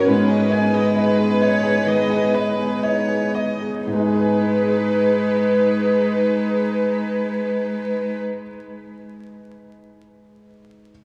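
Rubato and slowing over its first 3.9 seconds, this fragile, longing neoclassical fragment sets an up-front chamber violin section on a sul tasto melody above a close, softly bowed cello line. A single, intimate viola adds accompaniment, and a breathy, nasal pad with chorus sits in the background. A boxy grand piano accompanies and carries on alone after the strings and pad stop at 8.2 seconds until 10.9 seconds, inside a vast cathedral reverb flecked with vinyl crackle.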